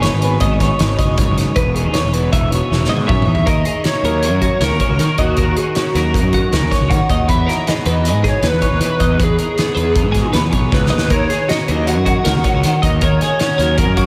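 Set in a straight 5/4 at 157 BPM, this intricate, bright math rock and midwest emo passage is cut from a longer piece and rides on a loose indie drum kit whose punchy kick and fat snare sit up front in a pumping studio room, with fills around 2.7 seconds and again near 10.7 seconds. A fuzz-laden picked electric bass, overdriven and warm, anchors the low end while a clean, twangy twelve-string electric guitar plays accompaniment through lush chorus. A second twelve-string, compressed and bright, weaves arpeggios in the background, colored by analog chorus and tape echo. From 3.1 seconds a raw garage guitar carries the melody with a lo-fi, overdriven grit, dressed in ensemble chorus and tape echo. The harmony moves through G#m7, Emaj7 and D#m7, and the whole mix is dreamy and soaked in a huge ambient reverb.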